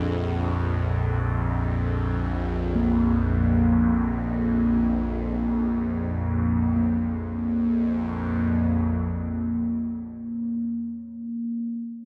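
Floating in free time with a meditative, spacious calm, this cut from a longer world meditation piece unfolds at an unhurried, unmeasured pace. An evolving wavetable pad holds a low drone from the opening second, its detuned unison tones morphing with a slow attack and long release, sitting bright and up front with a phaser and its own built-in reverb. At 2.8 s a quartz singing bowl joins on Bb3, struck with a felt mallet and ringing pure and mellow, its dark, smooth tone carrying a slow beating. The two parts sustain together until the close at 10.1 s, with the music shifting into a new section at 6.8 s. A wet church reverb, long and enveloping, wraps the sound in a sense of open space.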